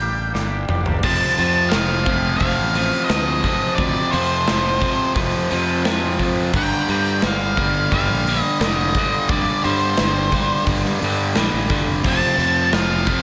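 This quiet-loud alternative rock excerpt, cut from a longer piece, moves at a steady, straight pulse in four with a dark, cathartic mood. It opens on a Gm chord, with a twangy, clean electric guitar picking arpeggios for only the first second while the big rock drum kit plays a fill from 0.3 to 1.0 s. At 1.0 s the piece shifts into its second section on an F5 power chord, as a bright fuzz guitar and an overdriven electric guitar drive a low riff together, moving to G5 at 6.5 s. Throughout, an octave-fuzz lead guitar with a dusky distorted tone carries the melody over a growly, punchy fuzz fingered bass, and the up-front drums add a punchy kick, medium-tuned snare, bright crash and hi-hat, and toms. A thick, double-tracked fuzz guitar slips into the background with its own riff at 12.0 s as the harmony lands on F. The guitars carry slapback echo, and a lush hall reverb gives the whole mix a big arena sound.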